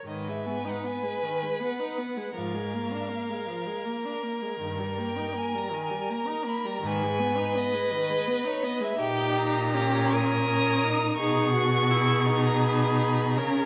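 Set in a reverberant recital hall, this short excerpt of a slow, romantic classical string quartet movement in G# minor moves at 81 BPM in a rubato 3/4, yearning and elegiac, as a rich first violin sings the high melody with vibrato, a clear second violin holds a close, up-front inner line, a warm viola accompanies with expressive portamento, and a focused cello sits close and up front on the bass.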